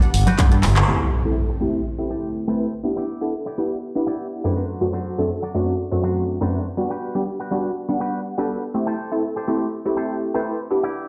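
The recording sounds as if it were played through a big sound system in a bare room, with a large studio reverb and a moderate plate adding space. This groovy, sensual slice of filtered disco house opens with the full band: a punchy, tape-warm analog drum machine playing handclaps and hi-hat, bright close maracas and congas, a bright, up-front fingered electric bass, and a layered, punchy electronic kick, all with sidechain pumping or low-pass filtering on most parts. After a drum fill and a band accent, the rhythm section stops at 0.9 seconds, when an up-front electronic impact arrives and a filter sweep begins that runs to the end. From the start, the detuned sawtooth-and-square polysynth carries the funky comping, with a filter pluck, chorus and phaser, mellow yet up front, over chords moving from Gmaj7 through Am7, Em7 and D7/F# and back around. Alongside it, a clean, twangy electric guitar with an envelope filter plays a compressed, picked riff with subtle chorus and pumping, lasting until the piece is cut off at 11.1 seconds.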